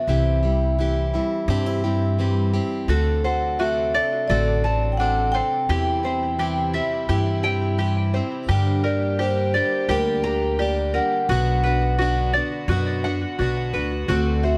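Hopeful and warm, this 86 BPM folk excerpt in D mixolydian puts a ringing, close-miked vibraphone melody played with soft mallets over a woody pizzicato upright bass up front and a picked plugged-in steel-string acoustic guitar with audible finger squeak, while a fingerpicked steel-string guitar plays alongside them only until 2.9 seconds. At that point a floating, distant chamber string section adds soft-attack bowed chords in the background and a light tenor ukulele brings arpeggios coloured by digital delay, as the harmony moves from C through D7, C/E and Gm to Bm. A mellow French horn with light vibrato enters at 14.1 seconds for a brief, punchy second line, all set in light reverb and studio ambience.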